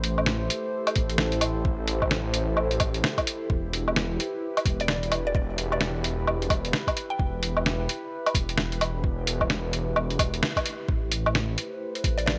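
Swung sixteenths in 4/4 drive this wistful, melancholic future garage excerpt, where a lo-fi sampler-style kit of muffled, overdriven hi-hat, fat snare and woodblock sits up front, a soft electronic kick joins at 1.0 s, a menacing detuned saw bass swells and pumps beneath a warbling, nostalgic pad with chorus and phaser moving from Am7 to Em, and a woody, round mallet-like pluck with delay carries the melody from 4.8 to 7.4 s and returns briefly at 12.2 s, all in a light digital ambience with a band accent at 10.4 s.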